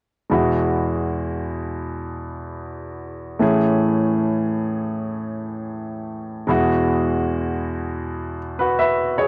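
A clear grand piano carries this short pop fragment alone, sounding natural and up front as it plays accompaniment from 0.3 to 9.3 seconds. The mood is hopeful and heartfelt, set at 78 BPM in 4/4 with a straight feel in E major. The harmony moves from Eadd9 to Amaj7 at 3.4 seconds and returns to Eadd9 at 6.5 seconds. The piano spans a range from E2 to E5, filling out both low and middle registers. A light reverb sits on the piano within a dry, close 1970s-style studio sound, and the passage is cut from a longer piece.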